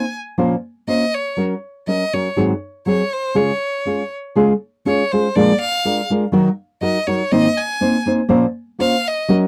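A single bowed violin carries the melody up front, its tone clear and focused, with a singing vibrato that gives this short passage from a longer Mexican folk piece a passionate, dramatic character. Beneath it, a nylon-string guitar plays the accompaniment, thumb-plucked with fresh strings and a dark, deep classical sound that sits even louder in the mix than the violin. The music moves in 2/4 but with a free, rubato feel, stretching and pulling the phrases. A single phrase is stated and then repeated from 4.4 seconds, with the harmony passing through chords such as Bbmadd9, Gb, Ab7 and Db, then Bb7, Ebm and Abadd9 before returning to Bbmadd9. The recording is dry and close, in a 1970s studio style, with a modest booth ambience that keeps both players intimate and immediate.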